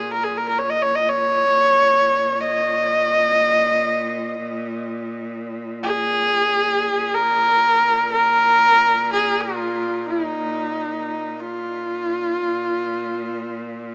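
Vast and solemn, this Mongolian folk passage in free time and a Bb yu mode sets a bright, husky horsehead fiddle up front, its single bowed melody shaped by vibrato and portamento, over a clear bowed cello holding a low Bb drone much further back. A huge ambient reverb spreads the sound into a cavernous space even as the whole comes through with a small-speaker character. Cut from a longer piece, it slows down from 12.4 seconds to its close at 13.9 seconds.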